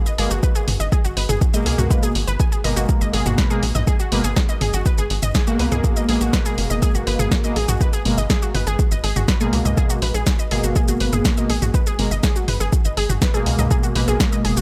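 Melodic techno with a hypnotic, melancholic pull, where an up-front overdriven deep kick and a gritty deep house kit of hi-hat, shaker, punchy snare and toms run alongside a tight, nasal sequencer bass, while bold, brassy analog synth stabs with chorus and phaser and a lush, detuned unison pluck spinning bright arpeggios through digital delay all pump against the kick over a single sustained minor chord in a light reverb.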